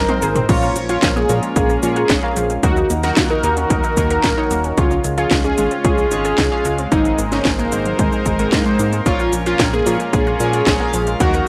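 Italo disco with a bittersweet, danceable mood, this excerpt opens with a drum fill from the overdriven house drum kit, with its cracking snare, metallic hats, toms and crash, before the punchy, overdriven electronic kick enters at 0.5 s. A thick, bold unison lead carries the mellow, detuned melody with vibrato, tape coloring and delay, over a dark, glossy chorused synth bass, bright stabs from an evolving chorused polysynth, lush delayed arpeggios from a background unison pluck, and smooth sustained chords from a warm analog pad. Handclaps and cabasa fill out the kit, and vinyl crackle and light reverb color the whole as the minor-key progression cycles back to its opening chord.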